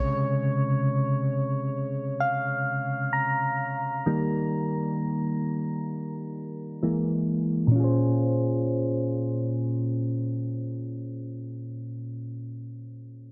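A soft, electric-piano-like synth keys part carries this moody, late-night R&B excerpt, playing solo through the first 7.7 seconds, set up front in the mix at a slow 65 BPM in a straight 4/4. Its tone is round and full-bodied, with a fast attack that decays gently, and chorus, phaser and a low-pass filter colour the sound, with a filter sweep running across the first 7.7 seconds. Spanning Bb2 to Bb5 in Bb dorian, the keys move from Bbm7 to Eb and then E before returning to Bbm7 at 7.7 seconds, where a second section begins. A light reverb surrounds the playing, and the master is dense and heavily limited in a modern style. Cut from a longer piece, the recording gives a mellow glimpse of the track.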